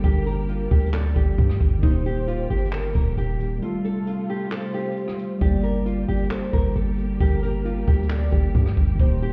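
From the first second a brooding, hard-hitting half-time trap groove at 134 BPM in G minor sets brushed jazz drums with handclaps, hi-hat, rim click and a boomy kick against a punchy, heavy 808-style bass, while a bright, fingerpicked nylon-string guitar carries the melody over a worn, lightly overdriven tine electric piano, a velvety detuned synth lead with chorus and vibrato, and veiled con sordino strings, all heard muffled as if through a wall, with a break from 3.6 to 5.4 seconds in this fragment cut from a longer piece.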